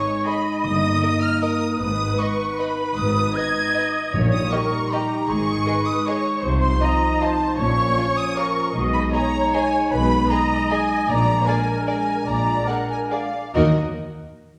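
A dark violin section carries the melody while a mellow, hollow flute plays a second line, over warm violas and distant, roomy French horn chords, with a second violin line, woody double basses and lush cellos entering by 0.6 s and timpani sounding in the background at 4.1 s, all in a sweeping, dark classical ballroom waltz in 3/4 at 134-170 BPM with rubato, heard from further back in a reverberant recital hall as a cut from a longer piece.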